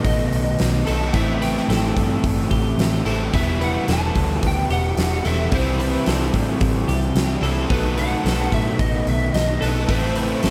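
A dreamy mix soaked in plate reverb carries this brooding, hazy stretch of shoegaze and dream pop rock in E minor at 110 BPM, cut from a longer piece. A huge arena drum kit sits up front with a fat snare and punchy kick over a dark, round, foam-muted picked bass. Two overdriven guitars play riffs, one warm and compressed through analog chorus and a hollow-body one tucked behind with reverse reverb, while a slightly broken-up lead guitar carries the melody through ensemble chorus and diffuse delay above a bright, twangy twelve-string playing background arpeggios, as the chords move from B7 through Am7, Em9 and C6 back to B7 and Am.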